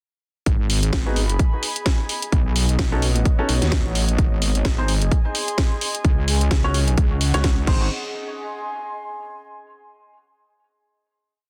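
Bass house at 129 BPM with a 16th-note swing, this short, complete piece carries a gritty, swaggering mood built on a drop that runs from 0.5 to 7.9 seconds before a final chord rings out to the close. A punchy, up-front electronic kick drives a four-on-the-floor pulse, joined by a programmed house kit with a cracking snare on the backbeat, closed and open hi-hats and crash cymbal, the drums sounding tape-warm and re-recorded in a small room. The wobble bass sits up front with heavy, saturated, detuned sawtooth and sine tones, shaping modulated phrases with changing wobble speed through chorus, overdrive and sidechain pumping. A worn baby grand piano adds sparse, echoing rootless chord stabs through digital delay, its action noise audible, while a dark, warbling, lo-fi pad with chorus and built-in reverb shifts slowly beneath and sustains alone after the other parts stop near 7.9 seconds. 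The chords move from G#m through B7 and G# to C#sus4 before resolving on G#, all in a dense, heavily limited modern master with little reverb.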